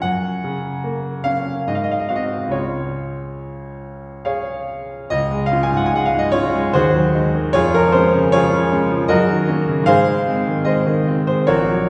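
In a flexible, rubato 3/4 that drifts between 65 and 79 BPM, this short classical passage from a romantic character piece for solo piano unfolds in D-flat major with a lyrical, passionate mood, its tuning set slightly low at A4 = 436 Hz. The grand piano sits up front with a clear, smooth, vintage tone, ranging from Bb1 to Ab5 as the harmony moves through Gbmaj7, Ab7 and Db before a second phrase begins at 5.1 seconds. A wet recital-hall reverb with a 1.8-second decay gives the sound the spacious bloom of a church or concert hall.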